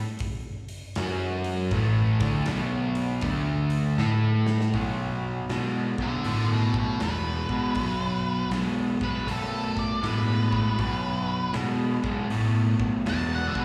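Blues rock power-trio and southern rock at a swaggering, raunchy 79 BPM with a swung 4/4 feel, this cut from a longer piece opens with a big-room acoustic drum kit, its punchy kick, medium-tuned snare and hi-hat setting things up; a crunchy, double-tracked overdriven guitar riff with slapback echo and a bright, growling overdriven picked bass arrive up front at 1.0 s over power chords moving through F#5, B5, D5 and A5; a drum fill at 4.0 s leads into the solo section, where a dark octave-fuzz lead guitar enters at 6.0 s with distortion, slapback echo and analog delay, all heard like a live gig through the venue's PA.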